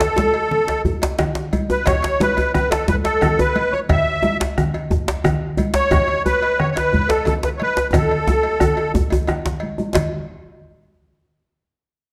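An earthy, powerful West African drum ensemble excerpt in a straight 12/8 opens with a reedy, shimmering musette accordion melody up front over a tight, cracking djembe played with hard hands, a softer rattling djembe and a metallic cowbell in the background, and high-tuned congas with thick skin, while a round bombo joins at 0.8 seconds and a drum fill begins at 7.9 seconds, the accordion falling silent at 8.9 seconds, all set in a dark, wet recital-hall reverb.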